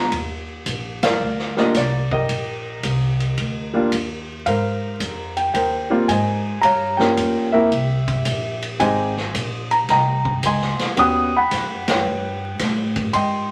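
An intimate, up-front concert grand piano carries the melody over thumpy, woody pizzicato upright bass from the start, joined by a distant, roomy big-band drum kit with a punchy kick, shaping a sophisticated, warm jazz piano trio swinging at 111 BPM in 4/4 that moves from Eb major to Ab major at 4.5 s, with band accents at 0.9 and 11.8 s, all in a club reverb under a layer of vinyl crackle in this passage cut from a longer piece.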